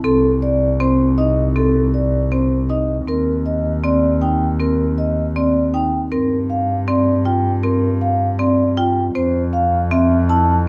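Propulsive and bright, this short excerpt of minimalist classical pattern music moves at 158 BPM in a straight 4/4, with a ringing, metallic vibraphone played with soft mallets and its motor off carrying a mellow melody, an up-front marimba struck with medium hard mallets spinning arpeggios, and a single bowed double bass laying down a rich, smooth bass line with vibrato, all over a progression moving from Cm through a chordless stretch and G7(no3) to Fmaj7(no3) in a lightly reverberant, closely and clearly miked space.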